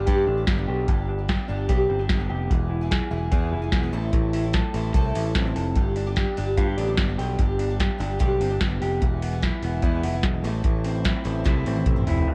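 A soft vintage rhythm box, up front with its deep kick, crisp snare, metallic hats and toms, keeps a straight 4/4 pulse for this nostalgic, breezy jangly indie pop excerpt alongside a growly, bright picked electric bass, a shimmering, octave-doubled twelve-string acoustic guitar with audible finger squeak, and a slightly broken-up, lo-fi electric guitar playing arpeggios through a small old amp with spring reverb and tape echo. The mix carries light reverb and a cassette-tape character before a drum fill arrives at 11.5 seconds.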